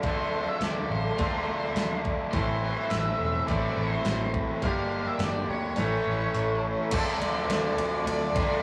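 Shoegaze and dream pop rock with a dreamy, melancholic mood, taken from a longer piece, where an up-front overdriven garage guitar riff and a clean, compressed twangy guitar in the background ride over a dark, round, foam-muted fingered bass. A sampler-style drum machine with a thumpy kick and fat snare keeps time, while a detuned sawtooth pad with chorus and ring modulation holds mellow sustained chords and an octave-fuzz lead guitar carries the melody from 0.1 seconds. The kick and snare drop out between 5.8 and 6.9 seconds, and the whole take has the rough feel of a small rehearsal room.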